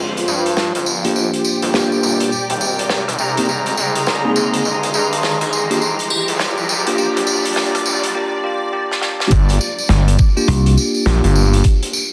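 Glitch hop at 103 BPM in G phrygian with a funky, playful swing, this excerpt builds over a gritty, saturated synth bass, a blurred granular cloud pad pumping with sidechain, a background riser, a loose small-room indie kit of hi-hat, rim click, snare and tambourine, and bell-like tine electric piano stabs with 12-bit sampler grit and tape echo under a filter sweep, then after a break and drum fill drops at 9.3 s with an overdriven knocking electronic kick and a brief punchy thumbed slap bass note at 10.5 s, all set in a lush hall reverb with vinyl crackle over a dense, heavily limited master.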